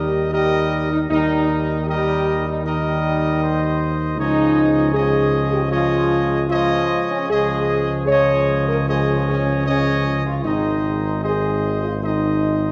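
Heard through the wet bloom of a concert hall with a reverb tail of about 2.1 seconds, this brief classical brass passage, cut from a longer piece, moves at a stately 77 BPM in straight 4/4 with a regal, solemn bearing. A bright trumpet section carries the melody between Bb4 and Eb5, its tone touched with light vibrato. Beneath it, a warm French horn section holds sustained chords with a smooth top, while a trombone section adds its own sustained harmony from a distance, soft in attack, tight and roomy in the background. Up front, a mellow solo tuba anchors the bass with light vibrato, reaching down to Ab1. All four parts sound together for the full 12.7 seconds as the harmony moves from Eb to Dbadd9 at 4.2 seconds and settles on Ab at 10.4 seconds.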